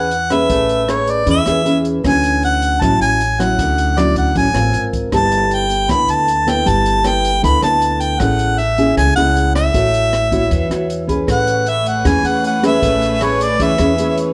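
Breezy and sunny, this bossa nova excerpt in A major moves at 156 BPM in a straight 4/4, with a warm harmonica carrying the jazz-style melody up front, its light vibrato and scooped notes riding over a thumb-plucked nylon-string guitar and a woody pizzicato upright bass. An open jazz drum kit with a dark, smooth tone and a boomy kick keeps time on hi-hat, kick and rim click, while the chords drift from Amaj9 through Dmaj9 and G69 to F#m9/A and A6. At 11.3 seconds a studio string section enters in the background with soft-attack bowed chords played sul tasto, all set in light reverb.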